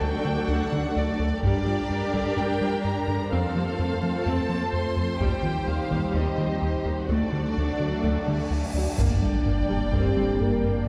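Heard from further back in a wet scoring-stage reverb, this brooding, futuristic hybrid orchestral and electronic film score in G minor at 127 BPM sets lush bowed violin sections, one carrying a rich melody over a focused second line, above expressive viola and cello sections and an airy, breathy chorused pad, while a rubbery, hollow square-wave bass riff drives the low end and a background taiko ensemble strikes in short bursts, until a huge, bright cymbal swell rises from 8.1 s into an impact with a sub drop at 9.0 s, where mellow, vintage French horns, a saturated sub bass and a very quiet, woody double bass section join.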